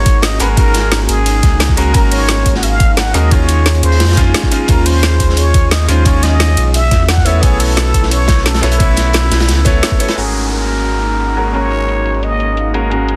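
Lush and soulful, this excerpt of liquid drum and bass at 175 BPM pairs a raspy, growling plunger-muted trumpet lead, carrying dub echo, with a brilliant grand piano roughened by 12-bit sampler grit, an airy, detuned pad pumping softly in the background, and a round, up-front sub bass over sus4 ninth chords. An overdriven, knocking electronic kick and a layered kit with a woody snare and bright hats drive the drop, while a dark, saturated breakbeat kit sits behind them until 10.2 seconds. From 10.2 seconds, a filter sweeps across the piano and an electronic downlifter enters as the kick falls away, all under a dense, heavily limited modern master.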